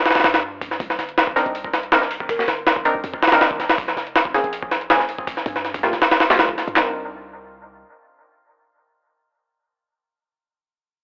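Drum and bass with a jungle feel, this short excerpt runs at 161 BPM in C minor and carries a nostalgic, dark mood. A sampler-style drum kit sits up front, pitched up, compressed and overdriven, with a thumpy kick, a high-tuned snare, hi-hat and handclaps in a small room. Beneath it, a deep, boomy 808-style sine bass stays in the background, its fast attack decaying into a mellow tail. Muted sawtooth chord stabs with a filter pluck, chorus and dub echo move through Cm9, Bbm9 and Gm9, and they continue after the drums stop at 6.9 seconds, ringing on until 10.3 seconds. A brief woody kalimba note, hollow and thumb-plucked, appears at 2.3 seconds in the background with its own dub echo. The whole recording has a dry, gritty hardware character with transformer saturation, a telephone-like tone and light reverb.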